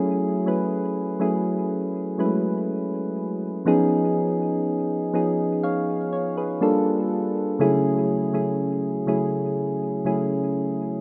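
A soft synth keys part with an electric-piano character plays alone through this brief R&B fragment, cut from a longer piece, its round, dark tone sitting up front with a fast attack that decays gently. Chorus and delay color the keys, which range from C#3 to E#5 over a slow 61 BPM in straight 4/4. In F# dorian, the harmony moves from F#m9 to C#9 at 3.7 seconds, touches Gm9 at 6.6 seconds, and settles onto F#m9/C# at 7.6 seconds. The mood is longing and late-night, held in a moderate plate reverb with a 3.3-second tail. The sound is that of a rough, unpolished home demo mix.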